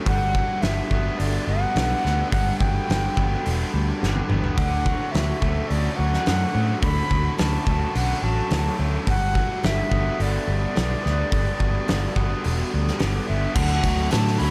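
A dreamy mix soaked in a huge ambient reverb opens this wistful, hazy excerpt of shoegaze and dream pop rock, moving at 107 BPM in a straight 4/4. Two guitars play riffs from the start: a raw, lo-fi garage guitar with overdrive and reverse reverb, and a thick fuzz guitar with distortion and ensemble chorus sitting in the background. Up front, a loose indie drum kit with a pumping room sound, dark cymbals, a fat snare and a punchy kick drives the pulse, marking a fill between 4.0 and 4.6 seconds, while a vintage muted fingered bass adds a round, foam-muted low end. Above it all, a concert flute carries the melody in a pure, straight tone, trailed by a diffuse ambient delay. The harmony drifts between Gmaj7 and Dmaj7, and at 13.6 seconds a double-tracked, hollow-body overdriven guitar with chorus joins in the background alongside a very quiet, jingly tambourine.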